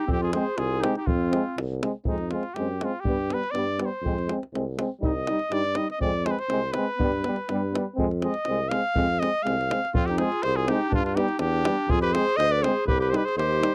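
Balkan folk for brass band, this short cut from a longer piece runs at 122 BPM in a straight 2/4 and feels fiery and restless, set in F Dorian with a raised fourth. A clear cornet with a soft attack carries the melody up front, taking a solo from 2.1 to 9.9 seconds over chords that move among Fm, G and Cm. The clarinet adds a warm second line at the opening and returns from 10.0 seconds to the close, while the trombone sounds present and clear in its narrow accompaniment part. Underneath, the euphonium and tuba both carry a light vibrato and sit distant and roomy, the tuba holding the low bass line throughout. A tight, close and dry davul drives the percussion from start to finish. The recording has a dry, close 1970s-style studio sound with a light touch of reverb.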